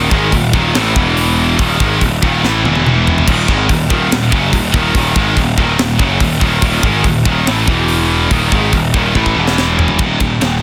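Heavy metal with an epic, aggressive half-time feel, built on a bright, high-gain distorted electric guitar and a tight, bright distorted electric guitar playing riffs over Eb power chords that shift to E, a growly, fuzz-overdriven picked bass pushed up front, and a tight drum kit with bright cymbals, a high-tuned snare and a tight kick that fires fills at 2.4 and 9.1 seconds, all in light reverb under a dense, heavily limited modern master, cut from a longer piece.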